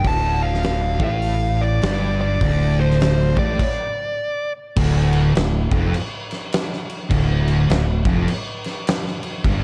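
A brooding, hypnotic stoner and doom metal excerpt in D minor at 102 BPM opens with a thick, double-tracked fuzz guitar riff placed up front, a big rock drum kit with a fat snare and punchy kick, and a picked fuzz lead guitar melody carrying tape echo, joined almost at once by a growly, bright fingered electric bass with overdrive. The swung 4/4 groove halts for a stop from 3.6 to 4.8 seconds, and the lead guitar falls away at 4.5 seconds while the riff, bass and drums carry the second section. The dark, warm production sits in a small room ambience.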